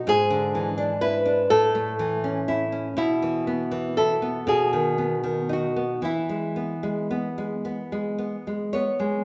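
Bathed in a large studio's wet reverb and played live in one room, this brief fragment of a tender, serene romantic duo in E major unfolds in a rubato 6/8 at 37-42 BPM (dotted quarters), with an up-front, fingerpicked flamenco guitar carrying the melody on bright, fresh strings while a bright, deep classical nylon-string guitar, also fingerpicked and close, provides the accompaniment through chords that move from E7/G# through A, E5/B and B before settling on E at 6.0 seconds.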